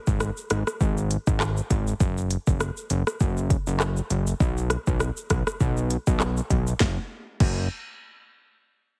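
Sunny and bouncy, this short dancehall cut from a longer piece rides a gently swung groove in four. An up-front afro-pop drum kit with an electronic, produced sound carries the rhythm, pairing a deep kick and sharp snare with smooth hi-hats, handclaps, rim clicks, shaker and a crash cymbal. Beneath it sits a fat analog bass, thick and sawtooth-edged with a detuned character, a filter sweep, fast attack and sustained notes, pitched low in its register and placed up front. Both parts play from the opening, the drums until about 7.6 seconds and the bass until about 7.7 seconds, while a change of section arrives at 6.8 seconds. The whole sits in a digital ambience with a heavily compressed, radio-like sheen from multiband compression.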